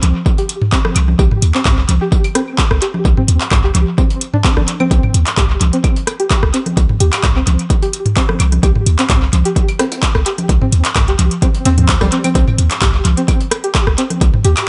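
A lightly swung 4/4 pulse drives this clinical, sparse minimal techno excerpt, where an overdriven, up-front electronic kick sits over a deep sine sub bass with a pitch-drop attack and sidechain pumping, while a booming analog drum machine adds metallic hats and handclaps through tape echo, a layered techno kit scatters claves, congas, rim clicks and toms, a very quiet, gritty sampler-style soul kit tucks in hi-hat, snare and tambourine, and a twangy, string-like resonator pluck rides a filter sweep with chorus and analog delay in an echo-heavy mix.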